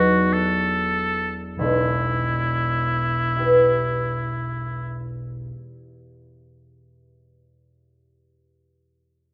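A warm oboe with light vibrato and a smooth top sings an elegiac, melancholic melody up front in this short excerpt of a romantic classical duo in E minor, moving in a slow, rubato 6/8 at 30-36 BPM that slows during the opening 1.6 seconds as the harmony settles from B7/E to E minor. The mellow, thumb-plucked concert harp rings alongside it, also up front, in accompaniment and carries on alone after the oboe stops at 5.1 seconds until 6.9 seconds, all in a wet recital-hall reverb.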